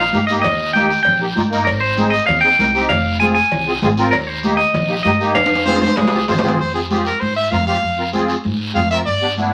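A twangy, picked electric guitar carries the melody through spring reverb over a shimmering musette accordion and woody pizzicato upright bass, opening a fiery, danceable F minor cumbia at 195 BPM in straight 4/4. High-tuned congas, a raspy guiro and ringing metal-shell cowbell and timbales drive the groove, with a drum fill leading into the second section, all set in a wet studio reverb and dusted with vinyl crackle. A brilliant, punchy trumpet with light vibrato enters at 5.7 seconds, the guitar drops out at 6.2, and the trumpet takes a forceful solo from 6.6 seconds to the end of this cut from a longer piece.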